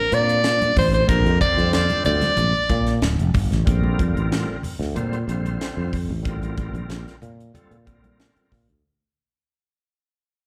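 Funky and soaring, this short cut of electric jazz fusion at 93 BPM in Bb major opens with a breathy, scooped soprano saxophone melody over a very quiet, lush vintage string machine, both gone by about 3.6 seconds, while a growly, up-front fretless bass, a crisp acoustic drum kit with a high-tuned snare and punchy kick, thin-skinned congas and a reedy tonewheel organ with key click, slow rotary speaker and slapback echo carry on as the chord moves from Bbadd9 to Bbmaj9 and the sound fades out from 3.7 seconds within a live club reverb heard through the venue's PA.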